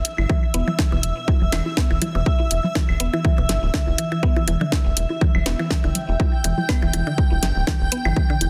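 A quirky, hypnotic stretch of minimal techno, cut from a longer piece, rolls along on a swung sixteenth-note groove over a single minor chord. An up-front, punchy electronic kick with overdrive anchors the track, joined by a house kit whose hi-hat and cracking snare carry their own grit and a large-room sheen. Beneath them a rubbery, hollow square bass sits in the low register, nasal and bouncy with a moving notch and sidechain pumping. A woody, round mallet-like pluck plays a riff coloured by chorus and digital delay, while bongos, woodblock and congas add delayed, analog-tinged colour further back. Over it all hangs a blurred, evolving granular cloud pad in a high register, breathing with the sidechain inside its own reverb, all pressed into a dense, heavily limited modern master.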